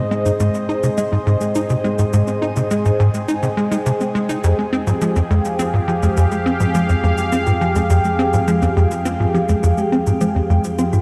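Ambient, sequencer-driven space music at 104 BPM, expansive and luminous, where a tight, punchy sawtooth sequencer bass riff drives up front beneath a bright, evolving resonant pad of sustained chords shimmering through reverb, while a round, tine-like thumb-piano synth pluck arpeggiates in the background under a filter sweep, a nasal analog drone hums below as a very quiet pulsing gated texture pulses high above, and tape-warm electronic congas and cabasa enter at 0.1 seconds, all moving from Ab to Fmadd9 in an echo-heavy, cassette-coloured mix with a wet plate reverb, cut from a longer piece.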